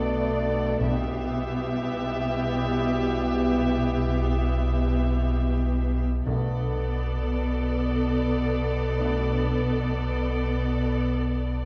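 A muted chamber string ensemble of violins, violas, cellos and double basses opens this eerie, mysterious suspense cue in free time, its veiled con sordino lines trembling with vibrato over a deep, clean sine sub-bass drone, while warm French horns and very quiet trombones hold sustained chords until 9.3 seconds, soft-mallet timpani with round calf heads sound at 0.8 and 6.3 seconds, and the whole passage sits far back in a wet scoring-stage reverb under a layer of vinyl crackle.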